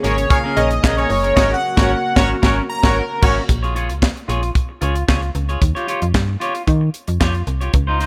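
Funky and late-night, this early-eighties boogie funk excerpt opens with a glossy chorused polysynth solo over a shimmering, background pulse-width pad, with a band accent hitting at 1.4 seconds and both synths stopping by 3.5 seconds, while a clean electric guitar riff with lush chorus, a snappy slap-like FM bass with a metallic attack, a tight, dry funk kit with a high-tuned snare and handclaps, and a punchy, distant horn section playing a second line in octaves all sit in light reverb.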